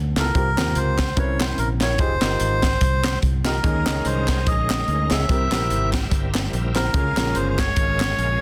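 Uptempo gospel with a solemn, fervent swing, where a reedy, nasal melodica carries the melody up front over round fingered electric bass, natural-sounding grand piano chords and a punchy, polished fusion drum kit with a high-tuned snare, while dry group handclaps sit in the background and a bright, shouting tonewheel organ with slow rotary speaker and chorus vibrato enters at 3.6 seconds with sustained chords, all in a small room with light reverb and a dense, heavily limited modern master in this short cut from a longer piece.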